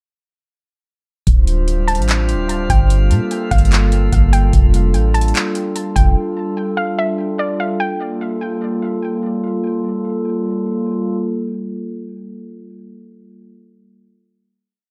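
Glassy, ethereal glass harmonica chords sit up front through this short, hazy cloud-rap piece in G dorian, held as a slow-attack pad that pumps against the beat from 1.3 s until the closing Gm9 ends at 11.2 s. Beneath it, a booming analog drum machine lays down a sparse half-time beat at 147 BPM, with a deep kick, metallic hi-hats in fast rolls and handclaps, while a soft, round 808-style bass follows the kick with long, dark sub-bass notes and pitch slides. Both drop out at 6.2 s, leaving the pad and melody to carry the final chord. A soft, round pluck with chorus, a low-pass filter and digital delay loops a sparse, gentle melody high in the register, like a repeated sample. Far in the background, a bright, drifting texture of glass harmonics adds chorused, reverberant overtones early in the verse. The whole piece sits in a digital ambience that keeps the mood spacious and hazy.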